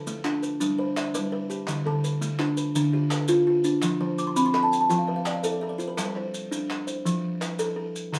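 Two kalimbas open together in an interlocking mbira-style cycle of arpeggios: one is a buzzing, woody solid-board instrument with a vintage, band-limited edge, and the other is a hollow-box kalimba that climbs higher, adds a fill from 4.0 to 6.0 seconds and stops at 6.2 seconds. Grainy, mellow maracas and a compressed, saturated group handclap join almost at once, giving this southern African traditional excerpt in 12/8 a hypnotic, warm pull as the chords move among Dm, G and F. The kalimbas sit up front and the maracas close, while the recording places the listener further back in a small room with a wet studio reverb.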